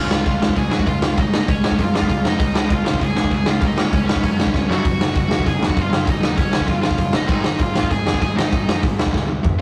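Energetic, upbeat punk rock at 196 BPM in straight 4/4, this brief section cut from a longer piece pairs a bright, high-gain lead guitar melody with a crunchy overdriven rhythm riff in the background, a growling, very quiet picked bass, and an up-front raw garage drum kit with punchy kick, medium-tuned snare, hi-hat and toms that drops fills at 4.5 and 9.1 seconds, all moving from Db to Gb over a rough, dry rehearsal-room sound with tube saturation.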